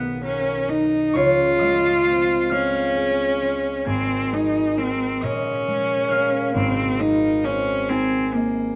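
Dreamy and pastoral, this short passage from a longer impressionist classical piece unfolds as a duo for cello and harp in Ab major. It moves in a slow, rubato 6/8 at 44 BPM counted in dotted quarters, lasting about 8.8 seconds. The bowed cello carries the melody between Bb3 and F4 with a clear, smooth tone, even phrasing and light vibrato, sitting up front yet with a slightly distant quality. The concert harp accompanies throughout, its fingerpicked acoustic strings ringing across a span from Ab1 to Ab6, also placed up front with a warm character. The harmony drifts through colorful chords, opening on Bmaj7, moving to Dbmaj7 at 1.1 seconds, and settling on Ab6 at 6.5 seconds. A moderate large-studio reverb and a dark, warm production lend the duo a dreamy glow.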